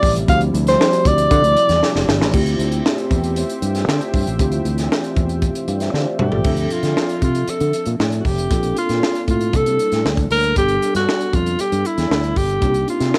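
Dry and close, with the soft haze of a home cassette recording, this short cut from a longer piece is polished 1980s jazz-funk pop in D minor at 117 BPM, with a bittersweet, slick mood. A breathy alto saxophone leads up front with a subtone, vibrato, scooped notes and a smooth top in a jazz solo style; it drops out at 2.1 seconds and returns at 6.2 seconds. Beneath it, a mellow tine electric piano comps throughout with analog chorus and a clean tone through its built-in speakers, while a smooth, detuned sawtooth pad with chorus holds soft-attack chords in the background until 6.4 seconds. A round, dark fingered electric bass sounds direct and amped, and the acoustic fusion kit sits up front in a small, pumping room, with a high-tuned snare, punchy kick, hi-hat, toms and crash, and two brief drum fills marking the section changes. The harmony moves from a lingering Dm11 through Dm9, Bbmaj7 and C13 to G, settling on Cm9, which gives the passage its warm yet wistful colour.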